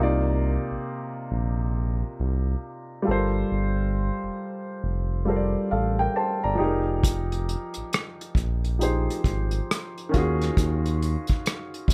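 A slow 68 BPM groove in 4/4 with a swung sixteenth feel sets up this soulful, sultry neo-soul R&B excerpt in C minor, where a clear, woody upright piano plays the Cm11, Gm11, Fm11 and Ebm11 chords over a mellow, sawtooth-and-triangle synth bass with vibrato and portamento, and at 7.0 s an acoustic drum kit with dark small-room character, a punchy kick, hi-hat and rim clicks played with bundle sticks joins them, all set in a moderate studio reverb.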